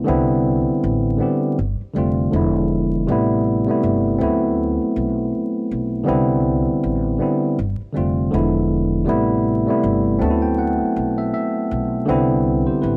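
A tine electric piano and a pizzicato upright bass enter together at the start, set against a bed of vinyl crackle in this reflective, hazy lo-fi hip hop piece, cut from a longer work. The tempo sits at an unhurried 80 BPM in 4/4, with a 16th-note swing that gives the groove a relaxed, loping feel. The electric piano carries the accompaniment up front, its tone clean and direct with a gentle warmth, moving through jazzy chords such as Cmaj9, G7sus4, E7b9, Am9 and D13 before the cycle returns to Cmaj9. Beneath it, the acoustic upright bass holds the low end with a woody yet bright steel-string character, sitting lower in the mix than the keys. A wet studio ambience with a short tail wraps the two instruments, and the crackle adds a dusty, nostalgic surface across the whole 13 seconds.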